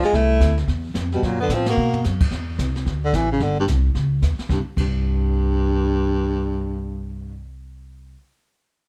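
A short cut from a longer small-group jazz piece opens with baritone saxophone, tenor saxophone, upright bass and brushed drums all sounding at once, swinging in 4/4 at a brisk 220 BPM in C major with a playful, relaxed mood. The baritone sax carries the melody up front, close-miked with a clear, breathy tone, soft attack and vibrato, while the tenor sax adds a second line with scooped notes before dropping out at 2.0 seconds. The band hits an accent together and the drums follow with a fill, the kit's high-tuned snare, boomy kick and dark cymbals played with brushes in a natural studio room. The drums stop at 4.9 seconds, and the pizzicato upright bass, woody and thumpy on steel strings, carries on under the baritone, which fades out at 7.5 seconds, until 8.1 seconds. The production is dark and dry, with little reverb.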